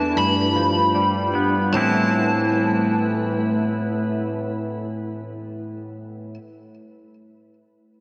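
An overdriven electric guitar, bright, compressed and up front, picks a high melody over a brooding, cinematic rock backdrop in a straight 4/4, with subtle chorus and delay on its lead. Beneath it, a clean, twangy electric guitar plays arpeggios through analog chorus and delay, while a glassy, ethereal FM pad with slow attack and long release holds dark sustained chords until about 5.6 seconds. The short cut moves from G7 to Amadd9 at 1.7 seconds, all set in a dreamy mix soaked in lush hall reverb.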